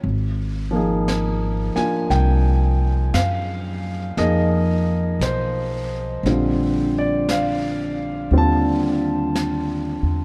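A lazy swung eighth-note feel in four drifts through this slow, smoky jazz ballad, wistful in mood and cut from a longer piece. Brushes on a dark, smooth, high-tuned snare, along with hi-hat, sit low in the mix with a rolled-off top. The pizzicato upright bass is woody and growly, steel strings giving it a dark edge as it plays up front in its low register. The concert grand piano carries the accompaniment with a warm, open tone and deep bass, also placed up front, moving through lush sixth-nine and extended major harmonies. The cathedral reverb wraps the trio in a vast, echoing space.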